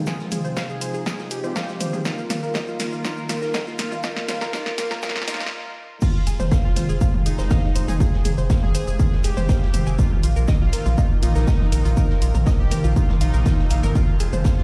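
Heard through a big sound system in a bare stone room, with little reverb overall, this cut from a longer melodic techno track in F minor drives along at 121 BPM with a hypnotic pull. The opening six seconds are a build-up: filter sweeps move through the soft supersaw melody, the analog pluck arpeggios and the lush, thick unison pad, while bold, brassy synth stabs with chorus and dub echo ride over a drum fill from a punchy, dry analog drum machine with crash, toms, snare, hats and shaker. A brief stop at 5.5 seconds clears the air before the drop at 6.0 seconds, and at 6.3 seconds a round, deep analog bass with sidechain pumping arrives up front beside the heavy, tape-tinged layered electronic kick. The nasal, detuned pluck keeps cycling through chorus, phaser and echo, the smooth supersaw sings under a low-pass filter and delay, and a gritty, saturated garage drum kit sits far back with its hats, snare and shaker. 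From 8.3 seconds a very quiet drone with moving, resonant overtones settles in low, as the harmony rocks between F minor and B-flat suspended chords.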